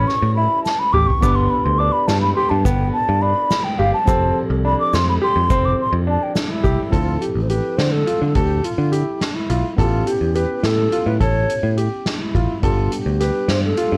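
A mellow, hollow concert flute carries the melody in this bright, intricate progressive instrumental, taking a solo through the opening 6.9 seconds with a soft attack, vibrato and pure, lifted highs. Set in 5/8 at 210 BPM counted in eighths with a straight feel, the band cycles through chords such as A7, G, Fadd9 and Dm7. A growly, up-front picked electric bass anchors the low end, while a clear, polished concert grand adds intimate arpeggios with audible action noise. A barky tine electric piano, lightly overdriven through a combo amp, sits in the background with accompaniment. A soft-mallet drum kit with a boomy kick, medium-tuned snare and dark cymbals plays an early fill, and a grainy tube shaker sits close and low in the mix from 0.7 to 6.8 seconds. The whole recording has a moderate studio reverb and the worn, warbly pitch drift of old cassette tape, and it is cut from a longer piece.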